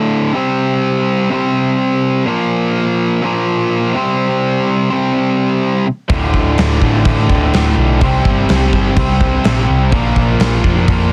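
A dense, heavily limited modern master with a cassette-tape grain and light reverb frames this aggressive, menacing hard rock excerpt, where an up-front, tight distorted guitar plays the riff alone over power chords until 6.1 seconds. At that point the full band arrives: a background overdriven semi-hollow guitar and a double-tracked distorted guitar thicken the riff, a round, punchy hollow-body short-scale bass digs in low, and a gated 80s kit with bright cymbals, a tight kick and a stone-room airiness sits up front as the chords move through Dm, C and Bb.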